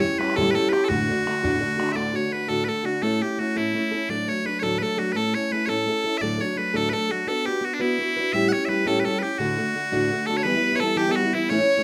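A rollicking jig in 6/8 at 113 BPM (dotted quarters) drives this bright Celtic folk excerpt in D major, cut from a longer piece. Piercing, continuous bagpipes carry the melody up front from the first moment, while a picked, plugged-in steel-string acoustic guitar sits close beside them with a boxy, parlour-sized tone, outlining changes such as A7, D, Bm and Em. A damped, tight bodhran is heard only in the opening 2.0 seconds, set distant in the background as if in a large room. At 10.3 seconds a single bowed fiddle enters with a second line, its sound rich and biting with light vibrato, intense yet placed at a distance, just as the tune turns to a new section. Moderate studio reverb gives the whole a polished, lively space.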